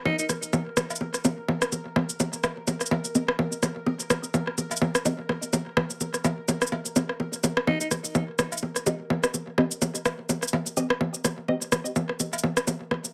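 A small, moderately live room gives this cool, hypnotic minimal techno cut a close feel, with the overdriven electronic bongos, rim click and cowbell sitting up front and trailed by digital delay. It moves at 126 BPM in 4/4 with a 56% swing on the 16ths, rooted on a C minor chord, while a layered, tape-tinged cabasa runs beneath the percussion throughout. A muted, deep dub chord stab, built from detuned sawtooth, pulse and sine waves with a wave-folded pluck, carries a filter sweep through phaser, chorus and delay until it stops at 11.6 seconds. Underneath, a very quiet pulsing gated texture of detuned triangle tones holds a sustained, tempo-synced shimmer on Bb4. A raspy, gritty alto saxophone makes only fleeting appearances, a scooped vibrato note at the very start that returns at 7.7 seconds and echoes away through digital delay, in what sounds like a fragment of a longer piece.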